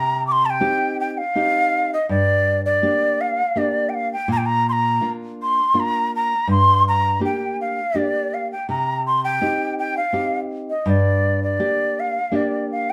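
A moderate studio reverb and the closeness of a band playing live in one room frame this melancholic, wistful Andean folk excerpt in triple metre. Up front, a large wooden quena carries the melody with an airy, mellow tone, tongued notes and expressive vibrato. A classical nylon-string guitar sits up front as well, woody with old strings and thumb-plucked, accompanying through Cm, Gm and Bb for the full 12.9 seconds.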